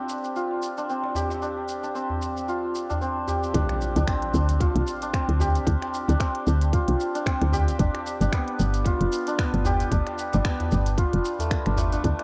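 Meditative and warm, this organic downtempo excerpt moves at 113 BPM in 4/4 with a gentle 16th-note swing, cut from a longer piece. Up front, a hammered, shimmering santur plays ringing arpeggios from the start, trailed by dub echo, while an organic electronic kit of finger snaps, smooth hi-hat and shaker slips in almost at once through tape echo. A clay-shelled darbuka, played with hard hands, sits distant in a large room in the background. At 3.5 seconds a woody, round FM bass arrives up front, dark and decaying with sidechain pumping, alongside a tight electronic kick and a background impact that lasts until 5.7 seconds. The harmony rests on F5 before shifting to G7 at 7.8 seconds, and the echo-heavy mix is framed by light reverb and digital ambience.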